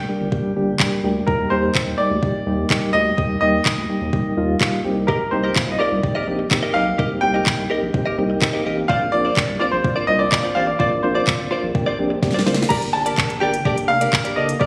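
A clear, up-front baby grand piano with delay carries the melody over mellow, chorused electric-piano-like synth keys with tremolo and sidechain pumping and a deep, round analog bass that also pumps, opening this driving, confident dance-pop excerpt in G minor at 126 BPM, with a smooth R&B drum kit of soft kick, fat snare, handclaps, hi-hat and crash arriving at 0.3 seconds, a clean, direct-recorded electric guitar riff with analog chorus joining at 5.1 seconds, and a drum fill leading into a new section at 12.7 seconds as the chords return to Gm, the whole captured in a light reverb with the roomy feel of a phone recording.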